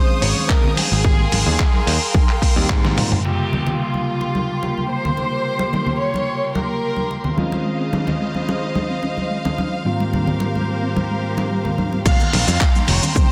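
Nu-disco excerpt at 109 BPM in Bb dorian with a groovy, cosmic mood, where a sul tasto chamber violin section carries the melody through digital delay over clean tine electric piano accompaniment, lush bowed studio strings pumping under a filter sweep from 3.3 to 12.1 seconds, ringing soft-handed congas and a very quiet, dark round pluck playing arpeggios from 7.7 seconds, while the growly bright picked bass, gritty tape-toned sampler drum kit with handclaps, shaker and toms, and a punchy overdriven kick drop out after a drum fill near 3.3 seconds and return for the drop at 12.1 seconds under a dense, heavily limited master with light reverb and a faint mains hum.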